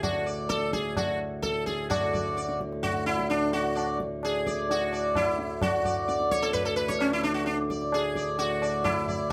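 A bright, buzzing sitar, a reedy pedal harmonium drone and low-tuned tabla sound together from the very start of this short excerpt of Hindustani classical music in raga Yaman on D. The mood is devotional and radiant, moving at 129 BPM in a straight 4/4. Up front, the plectrum-plucked sitar carries the melody between C#4 and D5, its sympathetic strings giving the tone a shimmering halo. Beneath it, the harmonium breathes a mellow drone low in the register, while the tabla rings out close and dry. The performance sits in a small room whose reverb lends a sense of distance, and after a brief opening passage the music moves into a new section at 1.9 seconds, continuing until the cut at 9.3 seconds.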